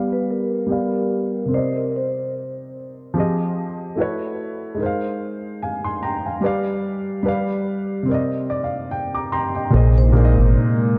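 This melancholic, hazy lo-fi hip hop excerpt opens on a dark, woody upright piano carrying the accompaniment, its sound dulled by cassette tape and a low-pass filter, while a filter sweep runs through the first 9.7 seconds. A metallic, ringing vibraphone played with medium mallets adds a brief melody with slow motor vibrato, softened by its own low-pass filter and trailed by delay, then returns at 10.0 seconds. At 73 BPM in 4/4 with a gentle swing on the sixteenths, the chords move from G7 through Cm9, Fm9, A6 and Ab6 before circling back, and the piano plays a fill just before the change. At 9.7 seconds a new section arrives on Bb9sus4, bringing a hollow, flute-like pad with chorus sitting in the background and a round, up-front dub bass played with the fingers. The whole mix is dreamy and soaked in plate reverb, with a warm cassette character.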